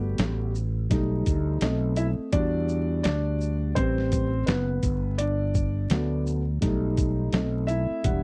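A dry, close recording in a 1970s studio style, dusted with vinyl crackle and almost free of reverb, frames this relaxed, cool jazz-hop excerpt. A dark, mellow concert grand piano takes the solo across the whole clip, its deep bass register sitting up front as it moves through Gmaj9, altered B7 chords, Em7 and Am7 before circling back. A fretless electric bass plays from the first moment, punchy and warm with a direct, amped tone. At 0.2 seconds a lo-fi sampler-style drum kit joins with hi-hat, shaker, a thumpy kick and a medium-tuned snare, sounding compressed, pitched down, muffled and overdriven. The swung sixteenth-note feel gives the groove a loose, unhurried hip hop sway.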